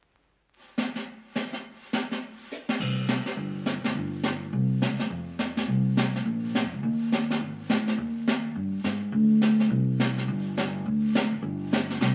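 A very old 78 rpm record, its vinyl crackle riding over a wet club reverb, frames this short, smoky, late-night jazz piano trio excerpt in a swinging 4/4. The brush kit opens alone at 0.5 seconds, up front with a high-tuned snare, dark cymbals, a boomy kick and hi-hat, all sounding like a small room. A drum fill at 2.5 seconds sets up the entrance of the upright bass at 2.8 seconds, plucked on gut strings with a woody, thumpy tone and sitting low between G1 and Ab2. From there the pair carries on together in the minor mode until the cut at 12.1 seconds, the bass placed close and prominent beside the brushes.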